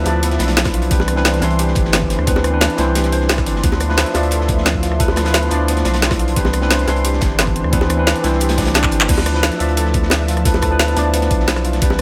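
Liquid drum and bass at 176 BPM in D dorian, rolling and melancholic, this excerpt moves between Dm69 and Cmaj9 while a clean tine electric piano with digital delay and a thick, detuned sawtooth pad with chorus, phaser and sidechain pumping sit over a deep, round sine sub bass up front, as a muted, felt-softened upright piano with audible action noise plays delayed arpeggios in the background. From 0.1 seconds an overdriven drum and bass kit with a woody snare, bright hats, claps, rim clicks and crash drives the groove, layered with a gritty, dark breakbeat kit whose top is rolled off, very quiet high-tuned bongos, and, from 0.7 seconds, a knocking, overdriven electronic kick. A drum fill at 8.8 seconds leads back into the same section at 9.1 seconds, all set in a light studio reverb.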